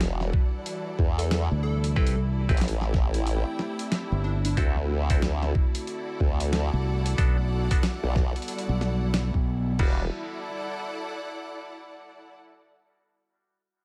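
A dry mix with little room ambience frames this funky, swaggering glitch hop excerpt at 92 BPM in 4/4, with a 62% swing on the sixteenths in E minor, cut from a longer piece. A gritty, thumpy electronic kick sits up front, joined by a pitched-down, tape-warm boom bap sampler kit of snare, hi-hat and crash, and together they carry the drop that runs to 9.8 seconds, both touched with studio reverb. Beneath them, a wobbling sawtooth-and-sine formant-sweep bass with chorus and overdrive sits alongside a punchy, direct fingered electric bass. A lush, bowed string section with vibrato holds a clear texture from the start through 12.4 seconds. A mellow, lo-fi pad, warbling and nostalgic under chorus, phaser, built-in reverb and sidechain pumping, sits in the background with it. A catchy, detuned square-wave unison lead with a filter sweep and dub echo states the melody briefly, while a hollow, nasal clav adds stabs from 2.0 seconds, coloured by 12-bit sampler grit, pumping and dub echo, over chords moving from Em9 through Am7, D7 and Gmaj7 before returning to Em9 for the closing section.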